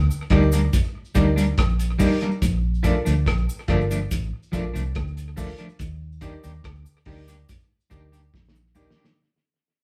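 Roots reggae at 71 BPM in 4/4 with an uplifting, sunny mood, cut from a longer piece and fading out across its 9.2 seconds, in which a dark, round, foam-muted fingered electric bass sits up front beside a picked, slightly broken-up electric guitar, a clear grand piano adds long-sustaining stabs over Ebmaj7 and Bbmaj7, a muffled, gritty cloth-damped drum kit with fat snare and tight kick closes on a fill at 8.3 s, and a faint cabasa carries tape echo, the band playing live together in one room with moderate studio reverb.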